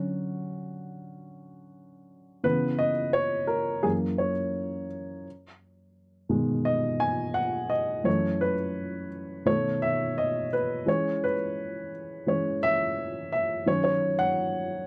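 A dark baby grand piano opens this brief soul fragment alone and carries it from start to finish, playing solo across all 14.9 seconds. The mood is cinematic and smooth, set in a straight 4/4 at 86 BPM. Its tone is mellow and intimate, with short sustain and the audible noise of the action sitting up front in the sound. The harmony moves through rich soul colors, starting on Dmaj7 and passing through C#m7, F#7, B6, F#m7 and B7 before reaching E6 at 10.9 seconds and D#m7 near the close. The playing spans from F#2 up to G#5, captured in a dry, close 1970s-style studio recording with only light reverb to give it a natural air.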